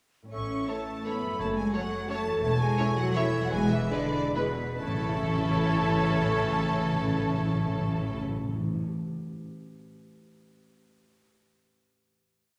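Up-front timpani single strokes on the bass notes, entering at 2.4 s, anchor this brief, festive and elegant orchestral ballroom waltz in A major, which moves in a rubato 3/4 between 128 and 186 BPM and slows from 1.9 s before settling on a final chord at 4.8 s. Rich, lush violins carry the tune, doubled at the octave by pure flutes and cellos, while a dark horn section sustains chords in the background. A second violin line, clear double basses, violas, a warm oboe, bassoon, trumpet, vintage-toned trombones and ringing rolled harp chords fill out the after-beat and sustained harmony, all set back in a scoring-stage reverb.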